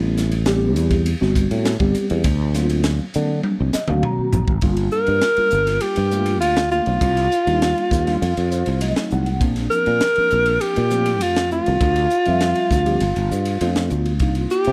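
A mellow alto saxophone takes the jazz-styled solo up front from 4.9 s, its vibrato and scooped notes riding a smooth top over this nocturnal, funky electric jazz fusion excerpt. A growly, punchy fretless bass sits forward beneath it while a clean tine electric piano, heard through its built-in speakers with ensemble chorus, supplies chords and adds short fills, the first at 3.4 s alongside a drum fill. The acoustic drum kit sounds crisp and gritty, with a high-tuned snare, a punchy kick and a saturated, pumping small-room ambience.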